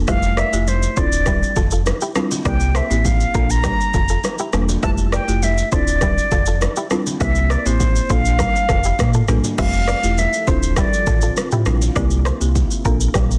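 A straight 4/4 groove at 101 BPM drives this sunny, romantic afrobeats excerpt in F major, led by an up-front, overdriven electronic drum kit with a deep kick, rim clicks, shaker, toms and crash cymbal, with bright, distant congas and bongos in the background and a full, sine-toned sub bass holding the low end. An airy, reedy flute with rolled-off highs carries the melody through a delay until 11.3 seconds, over woody, dry marimba chords and a twangy, clean electric guitar riff, also with delay, as the harmony cycles through Fmaj9, Dm9, C7 and Bbmaj7. At 10.4 seconds a dark, warbling vintage pad with chorus and reverb slips in behind the mix, adding a moody shade to the closing stretch of this dense, heavily limited master.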